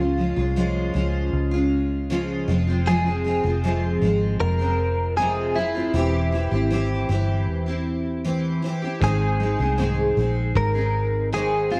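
Acoustic pop at 78 BPM in a straight 4/4, this easy-going, heartfelt excerpt pairs a bright, compressed clean electric guitar melody, colored by analog chorus and tape echo, with a full-bodied, double-tracked steel-string acoustic guitar and a round, punchy foam-muted bass sitting up front over chords moving from Db through Fm and C/E to Ab. At 9.0 s a very quiet concert grand with deep bass and long sustain enters alongside a muffled, gritty kick drum tucked in the background, which drops out at 10.7 s. Light studio reverb gives the mix a gentle sense of space.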